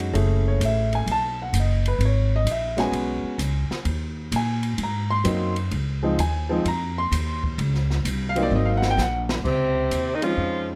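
Upright bass plays a woody, growly pizzicato tone up front alongside a vintage upright piano with audible action noise and long sustain, in a swinging small-group jazz excerpt at 129 BPM in Db major. A dark, boomy open drum kit keeps time and plays a fill from 8.5 to 9.5 seconds, after which a breathy, whispered alto saxophone takes the melody at 9.5 seconds over a punchy tenor saxophone line with scooped notes. Light reverb gives the small band an intimate, roomy feel.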